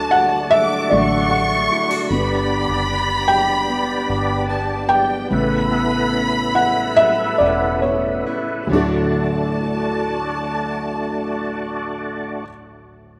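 This emotional pop ballad in D major opens with a felt-muted upright piano, soft and mellow with a thick-felt intimacy, taking a solo over the D, G and Aadd9 changes while the slow 68-76 BPM pulse eases back from 2.1 to 8.7 seconds. Around it, a reedy tonewheel organ holds sustained chords through chorus vibrato and a slow rotary speaker, and a full-bodied jumbo steel-string guitar fingerpicks arpeggios with digital delay in the background. A round, foam-muted electric bass sits low, a distant, lush violin section adds an expressive bowed second line, and the rough home-demo mix, set in a moderate, lush hall reverb with a faint mains hum, lands back on D at 8.7 seconds.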